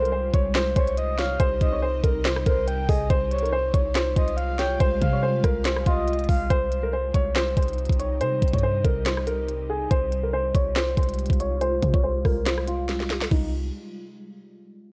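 A knocking, up-front trap kit with 12-bit sampler grit drives this hard-hitting, menacing half-time hip hop excerpt, its sharp snare, crisp hats, handclaps, rim clicks and crash landing over a deep, boomy 808-style bass. A soft, felt-muted upright piano carries the intimate melody through a low-pass filter, while a breathy, flute-like synth lead with chorus, delay and vibrato adds a second line until 6.5 seconds, all above an ethereal, detuned pad whose phaser and ensemble chorus shimmer over a Cm to Fmadd9/C progression. A filter sweep runs from 6.5 to 13.3 seconds, closing with a drum fill, and the dry mix sits on worn, warbling cassette tape with audible pitch drift.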